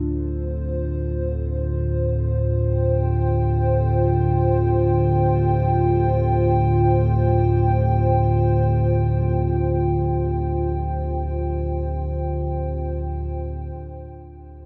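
In free time, this dark, unsettling ambient drone excerpt pairs a deep, rumbling, warbling drone with lush chorus beneath a moody, detuned analog pad holding sustained chords with ring modulation until 13.8 seconds, all bathed in a huge wet reverb, before a bright, worn baby grand piano arpeggio appears faintly in the background at 13.7 seconds.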